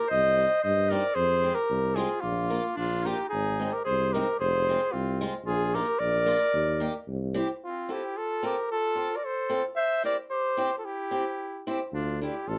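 A clear, classical-style flugelhorn opens this festive alpine folk dance tune at once, carrying the melody up front while a soft-edged, vintage-toned clarinet plays a second line beneath it. The band moves at 112 BPM in a straight 2/4, with a warm, roomy tuba holding the bass from a distance, touched with light vibrato. A boxy, picked acoustic guitar in a swing style fills out the accompaniment in the middle register. The opening passage wanders through darker minor-leaning harmonies before settling into a jolly F major at 7.6 s. The tuba drops out at 7.4 s and returns at 11.9 s as the harmony moves to D minor, and light reverb gives the band a sense of space in this short cut from a longer piece.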